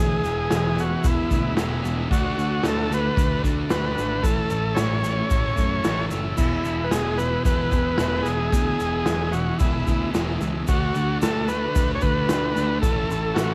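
A straight 4/4 pulse at 112 BPM drives this raw, rowdy slice of garage rock in E mixolydian, cut from a longer piece and cycling through E, D and A chords. An up-front, buzzy combo organ with heavy vibrato carries the melody between E4 and C#5, while a second, very quiet overdriven organ with light vibrato holds sustained chords underneath. A thick, double-tracked fuzz guitar plays the riff from E2 to D4, and a growling picked bass, bright and punchy with overdrive, anchors the bottom from E1 to F#2. A grainy tube shaker joins at 0.2 seconds, and the raw garage drum kit enters at 0.5 seconds with a punchy kick, medium-tuned snare, hi-hat and crash, its saturated, gritty sound rolled off at the top and set in a bright stone room. A transistor combo organ fill breaks through around 5.6 seconds, and the whole home cassette recording carries light reverb and a studio ambience.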